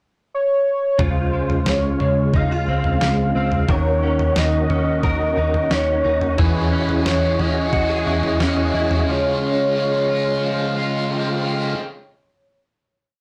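From 1.0 s, a detuned 8-bit drum machine with a thumpy kick sets a straight 4/4 pulse at 89 BPM, alongside a round, foam-muted picked bass playing steady eighth notes, in this floating, blissful dream pop piece in Db major. A velvety, detuned synth lead, entering at 0.3 s, carries a motif-based melody with vibrato and portamento through chorus and digital delay. Beneath it, a tonewheel organ holds sustained chords with key click and fast rotary speaker, and a clean, direct-recorded electric guitar fingerpicks arpeggios through ensemble chorus and delay. From 6.4 s, a bright, overdriven garage guitar strums eighths in open chord shapes with harmonic tremolo, and the mix sits in wet studio reverb on a blown-out, overdriven recording.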